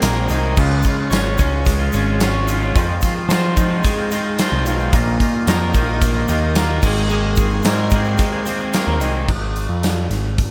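Recorded in a small, close-sounding room, this indie rock excerpt in F minor moves at 110 BPM in a straight 4/4, with a bittersweet, restless mood. A punchy, up-front rock drum kit with a medium-tuned snare, crash, hi-hat and tambourine rings out in a bright stone-room sound, matched by a growling, overdriven picked bass that also sits close and forward. Two guitars carry riffs: one overdriven and picked, colored by analog chorus and delay, the other clean, fingered and twangy. Far back in the mix, a swirling vintage string machine with a phaser holds sustained chords, while a grainy tube shaker adds a faint glint. The chords cycle through Abadd9, Db, Fm7 and Bbsus4 until the shaker drops out around 9.1 seconds and the guitars and strings follow at 9.3 seconds, leaving bass and drums to land on F minor through to 10.5 seconds.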